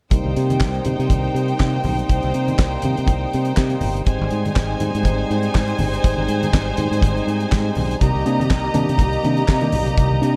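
A dark, warm production sits in a small room reverb, giving this sultry, glamorous disco cut a close, polished glow. At 122 BPM in C minor with a lightly swung sixteenth feel, the damped 70s drum kit sits up front with a fat snare, tight kick, hi-hat and handclaps, while a bright, growly fingered electric bass punches beneath it. A clear, intense studio string section carries a second line with light vibrato and tape echo, and a percussive tonewheel organ holds sustained chords in the background, its key click and third harmonic percussion colored by overdrive, lush chorus and a low-pass filter. Very quiet congas with a thin, low-tuned skin add soft-handed detail until 10.2 seconds. A worn, slightly out-of-tune tine electric piano slips in at 8.0 seconds as background accompaniment through a combo amp, just as the harmony, having moved from Cm7 to Abmaj7 at 4.1 seconds, returns to Cm7 under a filter sweep that spans the whole excerpt.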